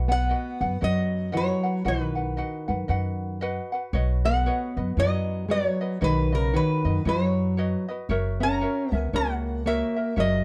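A lilting swing on the eighth notes carries this sunny, dreamy Hawaiian piece at 115 BPM in 4/4, in B major, cut from a longer track. The up-front upright bass plucks pizzicato on steel strings with a woody, thumpy low end, while a light, fingerpicked ukulele supplies bright accompaniment. Above them, the lap resonator guitar carries the melody with a metallic, nasal slide tone played with fingerpicks, sitting forward in the mix. A fingerpicked, plugged-in jumbo steel-string acoustic guitar adds a full-bodied second line. The harmony rests on B, shifts to Badd9 at 3.9 seconds and reaches F#7 at 8.1 seconds, all set in light reverb with a dark, warm production.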